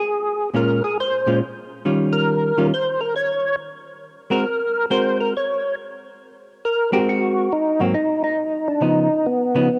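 A fat, key-clicking tonewheel organ with third-harmonic percussion, chorus vibrato and slow rotary speaker leads this greasy, bluesy swing jazz excerpt at 138 BPM in Ab mixolydian, soloing through chords like Bbm7, Eb9 and Ab9 until 7.1 seconds while a dark, picked hollow-body electric guitar accompanies up front from 0.5 seconds, all set in a lush hall reverb with the organ carrying a cassette-tape tint.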